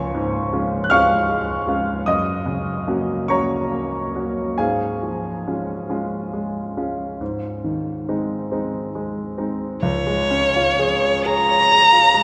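Tender and warm, this short passage from a longer romantic classical piece pairs grand piano with violin in Db major, moving in a slow, rubato 12/8 at around 41-53 BPM counted in dotted quarters. The grand piano carries the accompaniment from the start, its clear, smooth tone with a vintage character and short sustain sitting up front as the harmony moves from Db through Gb, Db/Ab and Ab. At 9.8 seconds the harmony settles back on Db and a single bowed violin enters with the melody, its rich, expressive voice shaped by vibrato and portamento and placed up front, louder than the piano. The violin line stays high, between Db5 and Bb5, and both instruments play until the passage breaks off at 12.2 seconds. The performance sits in a church or concert hall, where a wet cathedral reverb with a long 7.6-second decay surrounds the duo.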